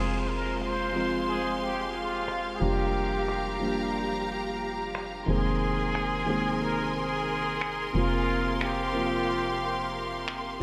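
A plunger-muted trumpet carries the melody of this short excerpt of organic downtempo, its brilliant, punchy tone shaped by wah-wah vibrato and a jazz-style, forceful solo voice trailed by analog delay. Beneath it, a felt-muted upright piano plays soft, mellow accompaniment up front, with audible action noise, a low-pass filter sweep and its own delay. A lush, clear string section holds bowed chords with focused vibrato, while a woody, round FM bass anchors the low end on a dark, decaying F. A crisp, ringing kora adds quiet fingerpicked arpeggios only until 1.0 seconds, and faint, tape-tinged electronic finger snaps enter at 0.6 seconds in a straight 4/4 at 90 BPM. The harmony moves from Fm through Gm7/F, Abadd9/F and Bbsus2/F over a held F, and a huge ambient reverb soaks the mix into a dreamy, hypnotic haze.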